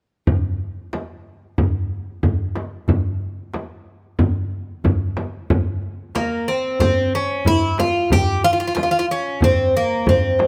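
A straight 4/4 pulse at 92 BPM opens the recording at 0.3 seconds, carried by a crisp, deep darbuka with a compressed, saturated metal-shell sound and a close, up-front frame drum, both played with soft hands. This passionate, warm Turkish makam ensemble piece in C makam hicaz is cut from a longer work, and at 6.2 seconds a bright, metallic Greek bouzouki enters on the melody, its picked double strings and some octave-doubled strings sitting up front between Bb3 and G4. Close, detailed miking and light reverb keep the sound intimate as the music moves into a new section at 5.5 seconds.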